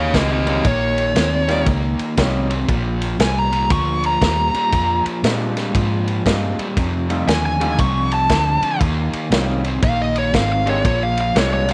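A swung electric blues shuffle at 118 BPM in 4/4, soulful and laid-back, this short cut from a longer piece rides a crunchy breakbeat kit of tight kick, medium-tuned snare and dark ride cymbal, gritty and saturated with a rolled-off top, beside a round, punchy, foam-muted fingered bass over an Eb7, Bb7 and F7 progression. Up front, a smooth, dark overdriven lead guitar plays a solo across the whole 11.7 seconds, while an overdriven semi-hollow guitar holds down a low riff through harmonic tremolo. A bright, brilliant concert grand piano enters at 0.5 seconds with quiet accompaniment, all set in light reverb.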